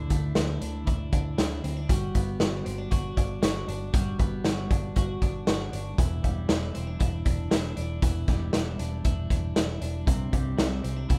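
A rough home-demo sound with small-room ambience frames this youthful, nostalgic jangly indie pop fragment, where a bright, twangy, compressed twelve-string electric guitar picks clean arpeggios over a dark, round, foam-muted fingered electric bass and a gritty, saturated garage drum kit of punchy kick, medium-tuned snare and hi-hat that sits up front with a pumping room sound, moving through Dsus2, Gmaj7, Em7 and Cadd9.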